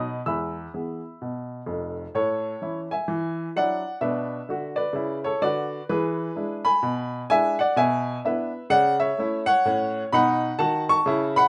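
Stride piano jazz, exuberant and swinging at 128 BPM in A major, in which a solo upright piano with a woody, up-front tone and a range from F1 to E6 plays through a brief opening and a second section from 2.1 seconds, moving from A to E9 and E7 and settling on F#m/A, in a moderately ambient studio room on this short cut from a longer piece.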